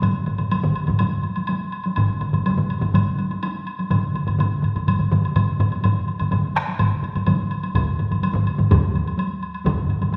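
A straight 4/4 pulse at 125 BPM drives this ceremonial, powerful Japanese taiko drum ensemble passage, cut from a longer piece. Three taiko groups play throughout: one struck with hard sticks and carrying a vintage, band-limited tone, another beaten with heavy sticks and miked up close, and a third hard-stick group sounding close and dry, while a woody woodblock sits quieter beneath them. A fourth hard-stick taiko group with a small-room character joins at 7.8 s, and the performance rings out in the wet reverb of a recital hall.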